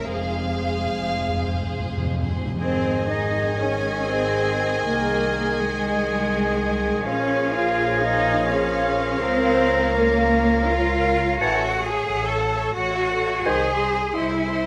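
Classical, a slow romantic movement for symphony orchestra in Ab major and 3/4, melancholic and elegiac, moving with rubato at around 68-91 BPM in this excerpt cut from a longer piece. Warm, vibrato-laden violins carry the melody over a second violin line in the background, a very quiet viola section, mellow French horns holding chords, and lush cellos and double basses beneath, while soft-mallet timpani play a round fill from 0.1 to 2.6 seconds. From 2.6 seconds an airy, hollow flute, a vintage-tinged oboe, a bright, punchy clarinet and a distant bassoon join, all framed by light reverb as the harmony turns from Fm through Ab and Bbm7 to A6 and finally G#/B#.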